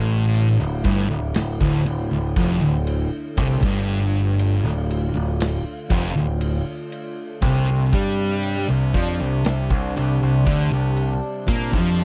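A slow, straight 4/4 pulse at 59 BPM drives this sludgy, brooding stoner and doom metal passage in D minor, cut from a longer piece, with a big acoustic rock kit of punchy kick, medium-tuned snare and bright crash cymbal entering at 0.3 s. Two distorted fuzz guitars play the riff, one dark and thick, the other warmer and set in the background, over an overdriven, growling picked bass that sits bright and up front, while an evolving, warbling analog drone with chorus holds sustained, detuned chords behind them. The sound is dry and close in a 1970s studio style, with the harmony moving from Dm to C5 at 7.4 s.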